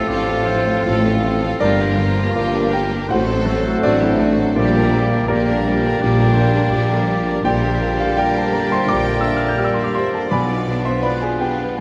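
A lush, lyrical romantic movement for piano and orchestra unfolds at 83 BPM in 4/4, its beats uneven and stretched with rubato. A dark, mellow baby grand piano carries the melody across a broad span from deep bass to high treble, joined on the melody in the background by a rich violin section with vibrato and a smooth top. Woodwinds weave second lines around it: a clear clarinet with a vintage colour, an airy flute with a soft attack and straight tone, and a distant oboe with light vibrato, alongside a second violin line that sits further back. Underneath, a very quiet viola section and a dark, roomy bassoon fill in the accompaniment, while a mellow French horn section and a trombone section hold sustained chords, with a cello section, a focused double bass section and a tuba anchoring the bass. The harmony moves from F/A through Gm7 and F#dim/A to a long stretch on Gm/Bb, turning to Bdim7 at 10.3 seconds, shortly before the double basses and tuba fall away at 10.9 seconds. 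A moderate concert-hall reverb gives the whole ensemble a spacious, blended sound in this section cut from a longer piece.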